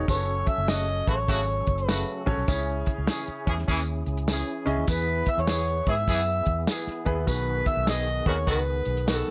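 A swung 4/4 groove drives this joyful, uptempo 1960s-style soul excerpt, built on a dry, dark drum kit with a tight kick, snare and hi-hat, a jingly tambourine set back in a large room, and a round, foam-muted electric bass sitting up front. A gritty, amplified harmonica carries the melody with tongue slaps, scooped notes and light vibrato. Beneath it, a natural-sounding grand piano with plate reverb plays accompaniment and a fat tonewheel organ holds sustained chords in the background through overdrive and a fast rotary speaker. A distant, roomy horn section joins at 0.7 s with a second line over the F#m, C#m, E and B6 changes, and the piano drops out at 8.3 s.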